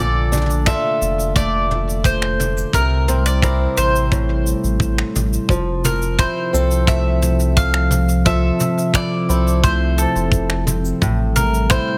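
An autumnal, wistful folktronica excerpt at 87 BPM opens with a bright, double-strung bowl-back mandolin carrying the melody through tape echo, over a warbling, detuned tape-like pad with chorus and its own reverb, boxy picked swing-style acoustic guitar arpeggios with audible finger squeak, and a deep, round analog bass sitting up front. A jazz brush kit with finger snaps, shaker and toms joins at 0.3 seconds, and a tight, rolled-off acoustic kick follows at 0.7 seconds. Harmony drifts from Bbmaj7 through C7 and Am7 to a long Fmaj7 at 5.5 seconds, all in a small room with light reverb.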